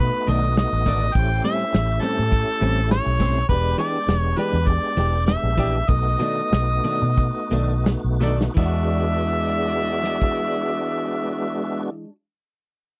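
An overdriven harmonica with a clear, lightly vibrato tone carries the melody from the opening moment, sitting up front over a full tonewheel organ whose slow rotary speaker and chorus vibrato give it a gently churning shimmer. This is a swaggering, laid-back soul blues excerpt in E mixolydian, played with a straight-eighth feel in 4/4 at roughly 82 to 103 BPM, cut from a longer piece and moving through dominant chords such as B7#9, A7#9 and E7#9 before landing on E9 at 8.6 seconds. A round, foam-muted fingered electric bass anchors the low end with a punchy, amped presence, while a brilliant, scooped clean electric guitar recorded direct adds compressed, picked stabs coloured by analog chorus. The acoustic drum kit enters at 0.6 seconds with a tight kick, medium-tuned snare, hi-hat, crash and dark cymbals under a rolled-off top, and a punchy horn section sits in the background holding sustained chords. 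The tempo slows from 3.5 seconds, and a drum fill leads into the closing section at 8.6 seconds. The sound is dry and close, in the manner of a 1970s studio recording with little reverb.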